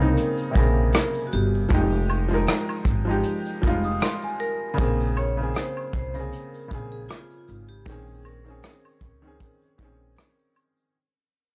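A dry, gritty recording in a small room, with vinyl crackle and transformer saturation, fades out across this short cut from a longer lo-fi hip hop piece, melancholic and reflective at 78 BPM with a gentle swing in Bb dorian. A clear, woody upright piano with short sustain sits up front, its cassette-tape tone filtered soft, while a pizzicato upright bass with steel strings sounds bright and woody under tube saturation. From 0.2 seconds a vintage brush drum kit brings a punchy kick, hi-hat and rim click with a dark, rolled-off top, and an egg shaker with woodblock and group handclaps stays compressed in the background. A vibraphone played with hard mallets carries the melody, metallic and ringing with a slow motor vibrato, softened by a low-pass filter and tape echo. Briefly, from 3.8 to 4.8 seconds, a large celesta adds a delicate, bell-like second line, sweet and close-miked, while across the excerpt the harmony moves between Bbm9, Fm9 and Bbm11.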